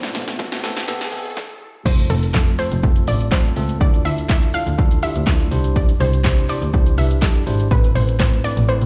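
A punchy, dry analog drum machine of kick, snare, handclaps, hi-hat, shaker and crash drives this confident 123 BPM dance-pop excerpt, where a faint detuned sawtooth pad and a background riser carry the opening build-up until a brief stop, then at 1.9 s the drop arrives with a round, warbling vintage pluck melody soaked in chorus and dub echo, riding over a bowed, focused double bass with vibrato and a clean, bell-like tine electric piano, both pumping with sidechain, before the kick falls silent at 8.7 s.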